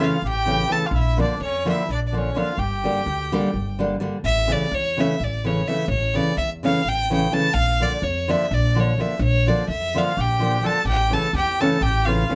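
Balkan folk in the manner of a wedding band, restless and bittersweet, moving in a straight 7/8 with the feel of a group playing live together in a small, reverberant room. A bright, intense violin carries the melody up front with vibrato and an airy bow, while a warm, vintage-toned trumpet adds a second line, dropping out at 3.8 seconds and returning at 10.0 seconds. A full-bodied, fingerpicked nylon-string guitar with audible finger squeak supplies the accompaniment, and a woody, thumpy pizzicato upright bass anchors the low end in this cut from a longer piece.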